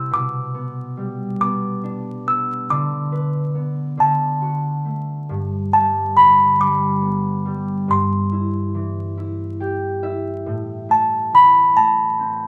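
Vinyl crackle and a wet studio reverb frame this gentle, tender lullaby, a short passage cut from a longer piece in G major, swaying in 6/8 at 46 BPM by the dotted quarter. Up front, a small, slightly out-of-tune music box carries the melody high above with a delicate, tinkling, mellow tone, while a thumb-plucked concert harp rings out the accompaniment beneath it through chords such as G/B, Bm/D, D, C/G and Am. The harp adds a brief fill between 9.2 and 10.5 seconds.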